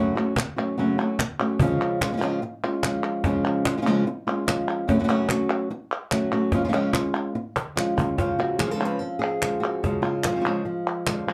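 Dramatic and passionate, this cut from a longer flamenco piece opens with an up-front, warm, fingerpicked acoustic guitar carrying the melody over chords that move between F#m and C#. Crisp, close and dry palmas hand claps and a snappy cajon with snares join almost immediately. After a fill at 7.6 s, a second fingerpicked guitar adds quieter stabs from 8.2 s, all heard in a wet small room.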